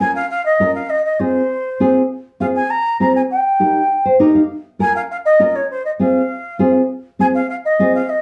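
An airy, mellow silver concert flute with a crisp chiff and an unsteady tone carries the melody from the very start over a dark, full-bodied, thumb-plucked nylon-string guitar with audible finger squeak, in this passionate, driving Latin fragment in F minor at 200 BPM, moving through Bbm, Fm and Eb, with a guitar fill at 3.9 s, the pair heard from further back in a small, reverberant room until the music breaks off at 8.2 s.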